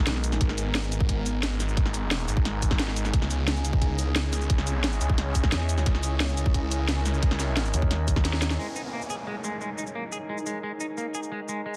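A dense, heavily limited and fairly dry mix carries this dark, futuristic slice of technical drum and bass, where a snarling distorted saw bass and a thick growling FM bass sit up front with a tight electronic kick and a layered kit of cracking snare, hi-hat and shaker, all over a metallic, eerie drone and an ethereal pad that both pump with the sidechain. After a drum fill and band accent, the drop gives way at 8.6 seconds to a bright, clean semi-hollow electric guitar playing arpeggios through dub echo, while a filter sweeps the drone and an electronic downlifter falls away beneath.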